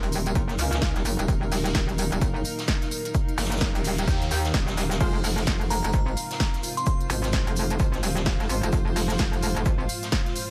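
A metallic, saturated wobble bass with chorus and sidechain pumping drives this swaggering, aggressive bass house excerpt at 129 BPM in F phrygian, moving from Ebm to Fm over a punchy, up-front electronic kick, a big-room dance kit with crisp hats, a rolled-off vintage kit in the background, a cloudy granular pad, a very quiet dark analog pad, a faint noise sweep from 3.7 seconds, a bold orchestra-hit-like stab at 5.0 seconds and a glassy, crystalline bell melody with tape echo at 5.7 seconds.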